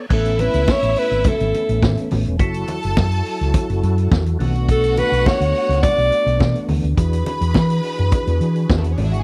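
Celebratory and joyful, this short disco excerpt at 105 BPM in A major pairs a breathy, up-front alto saxophone melody that drops out at 6.6 seconds with a clear, bowed string section, a round, dark hollow-body bass, a vintage kit with a punchy kick and dark cymbals, soft-handed low-tuned congas in the background, and a mellow percussive tonewheel organ holding chords through chorus vibrato and a slow rotary speaker, moving from Aadd9 through F#m7 and Bm7 to E9 in a dry, close 1970s-style studio sound.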